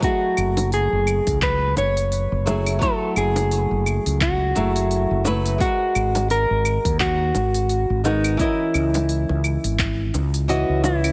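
A dark, clean electric guitar carries the melody up front through a tape echo, over fingerpicked acoustic flamenco guitar, a deep, layered electronic kick and a smooth, tape-warm R&B kit of claves, handclaps, hi-hat and shaker. This smooth sunset chillout piece in F# dorian moves at an unhurried 86 BPM in 4/4 with a 16th-note swing, drifting from F#m9 through G#7sus2 to C#m9. A round, punchy fretless bass joins at 0.4 seconds and close, dry, low-tuned bongos at 0.6 seconds, all under light reverb, before the kick stops at 10.0 seconds in this short cut from a longer piece.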